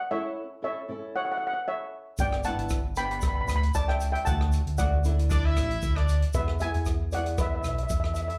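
Heard as a live club gig through the venue's PA and wrapped in club reverb, this sunny, bouncy calypso moves at 116 BPM in D major over chords of A, G, D and E. A shimmering, mellow steel pan carries the melody up front, while a thumb-plucked, double-tracked flamenco guitar with audible finger squeak accompanies it, and both carry slapback echo. At 2.2 seconds a dark, round fingered electric bass, an airy open jazz kit with boomy kick, hi-hat and rim click, and a grainy egg shaker in the background join, and between 5.3 and 6.2 seconds a bright horn section adds a brief octave-doubled second line with light vibrato and its own slapback echo.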